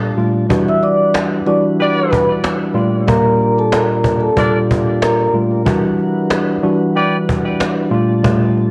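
A swung 93 BPM boom-bap groove on woody cajon with faint snares anchors this reflective, gritty hip-hop excerpt in E minor, where a worn, slightly out-of-tune tine electric piano sits up front over soft, flute-like tonewheel organ chords turning through a slow rotary speaker, a metallic, ringing vibraphone melody with analog delay arrives at 0.7 seconds and ends at 5.3, and vintage jazz-style horn stabs with light vibrato appear from 1.8 seconds, all colored by cassette tape and home-recorded room ambience as the harmony moves between Gm9 and Em9.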